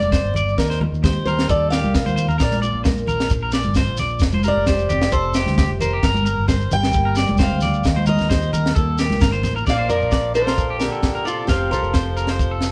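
A boxy, fingerpicked swing-style acoustic guitar carries the melody and solos until 9.7 seconds in this danceable, carefree highlife excerpt at 132 BPM in Bb major, over a woody, in-the-background nylon-string guitar, twangy, slightly broken-up electric guitar arpeggios, a round fingered electric bass, a grainy shekere, bright, high-tuned congas played with hard hands that drop out at 9.5 seconds, and an up-front, dry funk kit with a tight kick and high-tuned snare, until a raspy, growling tenor saxophone slips in behind at 9.7 seconds, all set in a moderate room reverb with the feel of a band playing live together.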